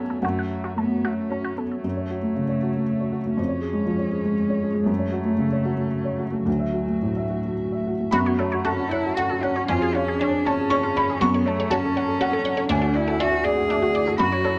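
A dark, warm production with moderate studio reverb frames this fragile, melancholic neoclassical excerpt for piano and strings, cut from a longer piece. It moves in a rubato 3/4 at 106-121 BPM in F# minor, circling through F#m, C#/E# and Dadd9 twice. Up front, a felt-muted upright piano carries the accompaniment across its whole length, soft and boxy with audible action noise. A single bowed cello sings the second line with rich vibrato and a smooth, even tone. Behind them, a warbling, lo-fi tape-like pad holds slow-attack chords steeped in chorus, phaser and its own reverb, lending a nostalgic haze. A resonant, squelchy blip pluck adds bright vintage arpeggios with phaser and slapback echo, sounding briefly at the opening and returning at 8.1 s through to 14.5 s.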